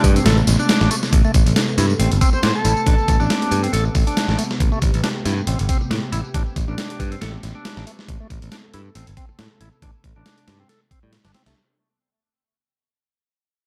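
Breakbeat in A minor at 138 BPM with a raw, funky swing, built on a gritty, thumpy sampler-style drum kit recorded in a large room and a punchy, bright picked electric bass up front, while a reedy tonewheel organ riff with key click, slow rotary speaker, overdrive and tape echo rides over a swirling, detuned analog pad with phaser, chorus and sidechain pumping, an overdriven tambourine sits in the background, a barely audible downlifter opens the cut, an airy, dreamy lead with vibrato and an old record sound appears briefly from 2.3 to 3.2 seconds, and vinyl crackle runs throughout on a single Am9 chord as the music fades out.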